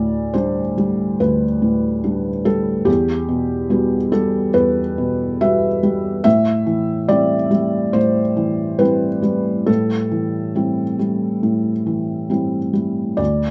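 Set up front in a small room with moderate reverb, this melancholic, wistful fragment of neoclassical minimalist piano features a lone felt-muted upright, dark and intimate with thick felt and audible action noise, played rubato in 4/4 across a D2 to E5 range as its harmony moves from Dsus4 to Emadd9 to Am7, tuned to A4 = 442 Hz.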